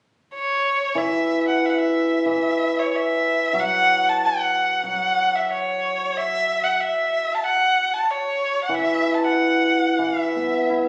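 Festive and graceful, this short passage of Chinese traditional chamber music moves at a rubato 92 BPM in 4/4, with a warm, woody erhu entering at 0.3 seconds to carry the melody with vibrato and portamento, its single bowed voice sounding up front yet slightly distant. A hammered dulcimer joins at 0.9 seconds as accompaniment, its shimmering, ringing acoustic tone also placed up front beneath the high erhu line. A phone recording in the room gives the pair a wet recital-hall reverb, with added club reverb and compression, in a fragment cut from a longer piece.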